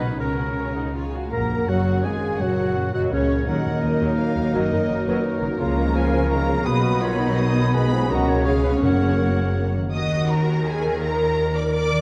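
Classical, dramatic and stormy, this restless fast romantic orchestral excerpt in 3/4 at 167 BPM with rubato in F# major sets a lush violin melody with vibrato over a clear oboe line, distant background violins, very quiet violas with portamento, a ringing thumb-plucked harp playing arpeggios, and bowed cellos and double basses on the bass, while clarinet, hollow flutes, dark bassoon and mellow French horn chords join from 1.3 to 9.8 seconds, round, very quiet timpani sound from 8.8 to 9.4 seconds, and a dark production with scoring stage reverb surrounds it.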